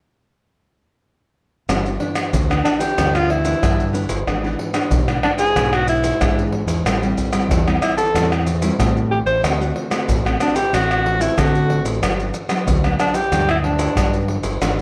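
This sunny, playful blend of samba and choro in G major, cut from a longer piece, starts at 1.7 s with guitar, bass and percussion entering together at 93 BPM in straight 4/4. Up front, the maracas, pandeiro, tamborim and a deep surdo are played with soft hands, yet they carry the distant air of a large room. A round, growling fingered electric bass with overdrive sits dark and direct, while a full-bodied nylon-string guitar is fingerpicked in a classical manner in the background. At 2.6 s a clear alto saxophone takes the solo melody in a jazz style, with vibrato, soft attacks and scooped notes, bathed in plate reverb. The harmony moves from G6 through E7/G#, Am7 and D7 to Gmaj7. The whole recording has a worn, warbling old-cassette character with pitch drift and light reverb, and it stops at 14.8 s.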